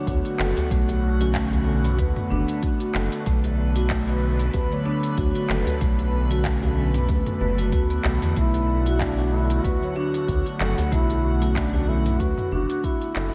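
Organic downtempo with a meditative, earthy mood, built on a sustained Bm7 harmony where a tine electric piano sits in the background beside an airy, breathy pad carrying chorus, phaser and sidechain pumping, while woody marimba arpeggios ring through tape echo over a round, dark analog bass that sits up front. A deep electronic kick and a crisp-hatted kit of handclaps, shaker and toms, both re-recorded in a large room, mix with a very quiet, cracking djembe in a lightly swung groove. At 8.4 seconds a mellow duduk enters with scooped, folk-style notes, and the dreamy, reverb-soaked mix fades out from 11.8 seconds as the passage is cut from a longer piece.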